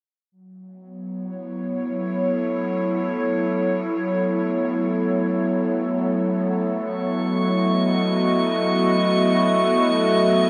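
Floating in free time, this serene, weightless ambient excerpt rests in A lydian, with a single A69 chord colouring the whole passage. An airy, breathy synth pad carries the sustained chords up front from 0.9 seconds, its soft, warbling vintage tone sitting between F#3 and D#5 with a gentle chorus. At 3.8 seconds an analog drone fades in low in the background, nasal and slowly evolving between A3 and E4, its pulse-width shading and moving notch adding quiet motion beneath the pad. A glassy high texture arrives at 7.1 seconds on C#6, drifting overtones shimmering brightly through chorus and its own reverb. A huge, wet reverb with a long 8.3-second tail surrounds the parts, giving the piece a vast, suspended sense of space.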